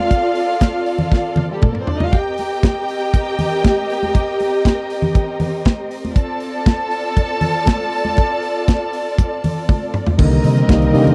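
A punchy, up-front acoustic drum kit with a medium-tuned snare and rolled-off top drives this danceable, driving disco excerpt at 119 BPM in C dorian, with fills at 1.1 and 9.7 seconds, while a dark bowed string section plays a woody second line with light vibrato and soft attack above expressive sustained chords with vibrato and portamento, and soft-handed, high-tuned congas add percussion as the harmony moves between Dm7 and Cm7, until a worn, slightly out-of-tune, lightly overdriven tine electric piano and an amped, overdriven fingered electric bass join at 10.2 seconds in this dry, close 1970s-style studio recording.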